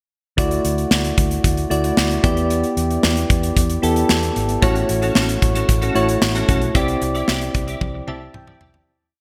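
A polished modern studio drum kit sits up front in this nostalgic, moody 1980s-style pop piece at 113 BPM, with a punchy kick, a medium-tuned snare and a big backbeat, plus hi-hat and toms. Beneath it, a vintage muted fingered electric bass plays a dark, round, foam-muted line of driving eighth notes with chromatic approach notes. Soft, mellow electric-piano-like synth keys push the chord rhythm in drop-2 voicings through Dadd9, Em7, A6 and Cadd9, coloured by chorus, tremolo and a filter sweep. At 4.6 seconds a bright, twangy twelve-string electric guitar enters with a clean, compressed, funk-style riff, treated with ensemble chorus and delay. The verse begins to fade out at 6.8 seconds, and from 7.8 seconds the drums and synth keys each add a short fill. A moderate, lush hall reverb and studio ambience give the whole a glossy, bright digital 1980s sheen.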